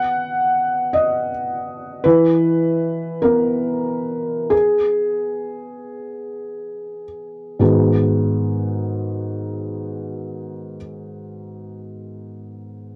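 Neoclassical minimalist piano in 6/8, intimate and wistful, played with free rubato and a slowing pull from 0.9 to 7.6 seconds. A lone felt-muted upright piano carries the whole 13-second fragment, its dark, thick-felted tone sitting close and up front as a rootless G#m7 gives way to E before returning to G#m7 when a new section begins at 7.6 seconds. The dry, close 1970s-style studio sound with a short booth ambience keeps it hushed and personal, like a passage lifted from a longer piece.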